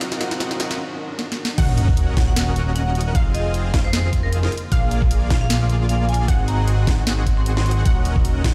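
A half-time groove at 153 BPM with a light 16th-note swing drives this lush, dreamy future bass cut in Eb dorian, moving from a short build-up into a drop at 1.6 seconds. Over the first moments, a bright grand piano sits in the background with digital delay and sidechain pumping, while a trap drum kit of sharp snare, bright hats and crash plays fills, and a riser and sub drop sweep in the background on through the impact. A huge, compressed supersaw riff carries vintage 12-bit sampler grit throughout, underpinned by a fat, saturated analog bass that sits up front with tube saturation and a high-pass filter, and a very quiet, veiled con sordino string section holds sustained chords. At the drop a knocking, tape-warm electronic kick enters up front, joined by a punchy unison pluck playing arpeggios, and from 2.3 seconds a metallic, ringing vibraphone with slow motor vibrato carries the melody through tape echo and sampler grit. 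Chords cycle through Ab7, Ebm7, Fm7 and Bb7, and the dry mix is heard played on a big sound system in a bare stone room.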